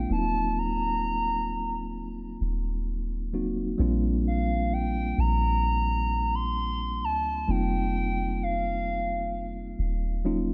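This short excerpt of slow, romantic contemporary R&B opens with all three parts at once: a hollow, woody synth lead carrying the melody high over a mellow electric piano and a deep, round 808-style bass. Sitting at 65 BPM in a straight 4/4 in Bb major, the tuning sits slightly below standard pitch, giving the smooth mood a faintly soft-focus quality. The lead has a clarinet-like, airy edge, with vibrato, chorus and a digital delay shading its sustained tones, and it drops out at 9.8 seconds while the others carry on. The tine electric piano accompanies in a clean, mellow voice that sounds as if heard through built-in speakers, while the bass blooms with a fast attack and decays into a dark, sine-like low end. The harmony moves from a brooding Ebm6 to a brighter Bb69 at 3.8 seconds, then hangs on an F7sus4, with every part kept up front in a dry, close sound.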